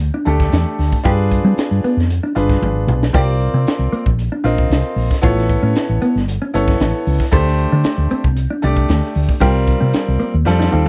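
A woody, round fretless bass with analog chorus opens this soaring, funky electric jazz fusion cut at 115 BPM, joined at once by mellow, clean electric guitar stabs, also chorused, then a clear baby grand piano with long sustain and a crisp, punchy drum kit with a high-tuned snare and gritty saturation, all dry and close, moving through chords from Em7 to C7(no3), with drum fills at 2.6 and 10.5 seconds and a piano fill at the close.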